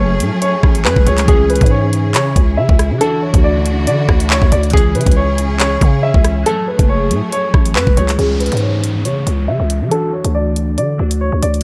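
Up-front drill drums with a knocking kick, bright hi-hats, handclaps and rim clicks drive this menacing, tense half-time hip hop excerpt alongside a growling, buzzy 808-style bass, while a woody, low-pass-filtered upright piano carries the short-sustained melody over glassy, detuned, chorused digital keys in the background and a lush, bowed symphonic string section that holds vibrato-rich chords until 8.2 seconds, when a filter sweep on the keys and an electronic downlifter carry the closing stretch to 11.6 seconds.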